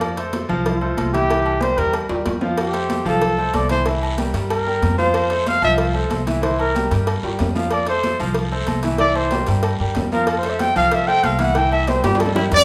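A festive, joyful salsa groove in 4/4 with a straight feel, cut from a longer piece and rocking between Fmaj7 and C7 throughout. A mellow, punchy trumpet carries the solo up front from 0.7 seconds, sounding distant and roomy in a pop style, over a bright, polished concert grand piano with deep bass comping beneath it. A woody, thumpy upright bass on gut strings anchors the low end with dark pizzicato, while congas tuned high with a thin-skinned, vintage tone sit in the background alongside ringing, saturated agogo bells and timbales. Round, low-tuned cowbell and bongos sound close and dry, a raspy guiro joins at 2.6 seconds, and drum fills punctuate the phrases. The moderate reverb of a recital hall frames the band, and a brilliant, smooth-topped trumpet section bursts in at 12.5 seconds just as the passage cuts off.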